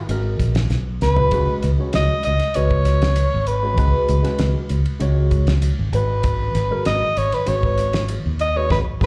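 A straight 4/4 groove from a damped 70s drum kit, with a fat snare, tight kick and dark cymbals, drives this short, intense electric jazz fusion cut, with fills at 0.7 and 8.7 seconds and a band accent closing it out. A round, punchy fingered electric bass sits up front beneath a worn, slightly out-of-tune tine electric piano, lightly overdriven through a combo amp with phaser and plate reverb, comping over G#m11 and C#7sus4. On top, a mellow soprano saxophone carries the melody with vibrato and a smooth top, colored by slapback and tape echo, all heard as a live gig through the venue's PA with a light club reverb.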